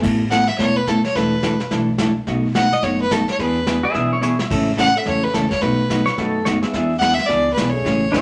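Country western swing in A major at a brisk, swung 215 BPM, this down-home, playful fragment features a biting, up-front fiddle with light vibrato carrying the melody over a dark, picked hollow-body jazz guitar, a woody, growly pizzicato upright bass and a brushed drum kit with dark cymbals that plays a fill at 4.2 seconds, while a bright, twangy pedal steel guitar adds a second line with volume swells from 3.8 seconds and a very quiet, clear upright piano touches in at the start and again from 5.0 seconds, all set in a wet studio reverb.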